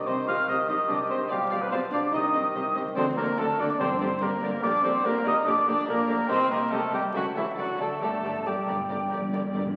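A mellow cor anglais sits up front in this lively, spirited excerpt from a quick classical-period movement for symphony orchestra in G minor at 144 BPM. It is joined by an airy, distant flute ensemble, a very quiet clarinet, a clear bassoon and a warm French horn section holding sustained chords, while muted, veiled strings lie beneath: violins carry the melody, a second violin group and violas sit very quiet, and cellos and double basses hold the bass. Round, soft-malleted timpani enter at 3.0 seconds and return with a fill from 8.0 seconds as the harmony moves through C minor, G7 and D to G minor, all in a wet scoring-stage reverb beneath the crackle of a very old 78 rpm record.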